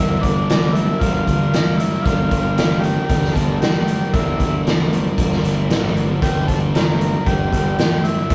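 A straight 4/4 pulse at 115 BPM carries this dark, hypnotic psychedelic rock excerpt in G dorian. A thick, double-tracked fuzz guitar riff with phaser and an overdriven picked fuzz bass hold the low end in the background from the start, and at 0.2 s a raw garage drum kit enters up front with a punchy kick and gritty, saturated tone. Above them, a buzzy vintage combo organ with light vibrato plays the melody over very quiet sustained organ chords on G minor, and the rough rehearsal-room recording adds light reverb and tube saturation.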